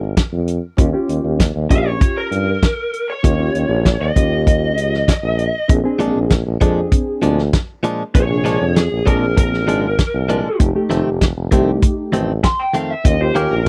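Swaggering and laid-back, this straight-eighth soul blues opens with a reedy electric piano tinted by phaser and a tuba with light vibrato carrying the bass, joined at 0.2 seconds by a soul drum kit with a fat snare, tight kick and rolled-off top. At 1.7 seconds a lead guitar through a small cranked amp enters with an overdriven, lo-fi melody, and from 6.0 seconds a bright, twangy, direct-recorded clean guitar adds compressed stabs over changes moving through Eb7, Bb7 and F7. The sound is dry and close, like a 1970s studio session.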